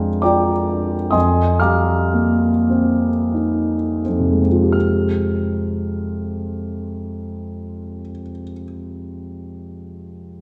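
In a triple metre with free, breathing rubato, this short passage cut from a longer piece of impressionist classical solo piano unfolds in a mysterious, wistful mood. A concert grand plays alone throughout, spanning F2 to F6, its tone intimate and polished, with deep bass, long sustain and the mechanical noise of its action audible close up. The opening phrase begins on an Fm6 harmony and slows as it unfolds, and at 4.7 seconds the music moves to an Fmadd9 colour for a second, contrasting passage that closes by 8.4 seconds. The piano sits present and up front, yet a wet scoring-stage reverb with a 1.9-second decay places the listener further back in the room, so each chord blooms into a lingering halo.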